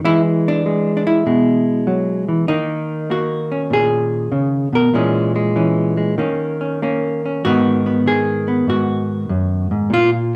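A lone hollow-body electric jazz guitar opens this solo jazz passage, its dark, clean, fingered tone sitting up front in the mix. The mood is swinging and sophisticated, moving at 97 BPM in 4/4 with a swung eighth-note feel that stretches freely into rubato. Across its range from F#2 to A#4, the guitar carries the harmony through E, D#m7, A#m7b5, D#5 and G#m7 in just over 10 seconds. A moderate reverb from a large studio, with a 0.8-second decay, gives the instrument some space, and the performance was captured live in one room. The passage is cut from a longer piece.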